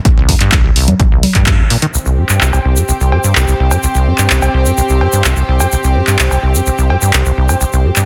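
A straight groove opens this gritty, hypnotic acid house excerpt, with a punchy, tape-warm electronic kick up front alongside an analog drum machine playing congas, cowbell, handclaps and hi-hat, its hats, snare and percussion dulled by low-pass filtering and colored by a small re-recorded room. A squelchy, resonant sawtooth acid bass runs its riff throughout, each note a fast, decaying filter pluck, roughened by tube saturation, thickened by analog chorus and pumping against the beat. The harmony opens on a C5 chord. The band hits an accent at 1.5 s, and the kick drops out at 1.6 s. From 1.9 s, a grainy, bright egg shaker sits close and dry, while a soft-attacked studio string section bowed sul tasto floats a pure, warm ensemble texture that pumps along with the bass. Light reverb and a dense, heavily limited modern master keep the sound tight and loud.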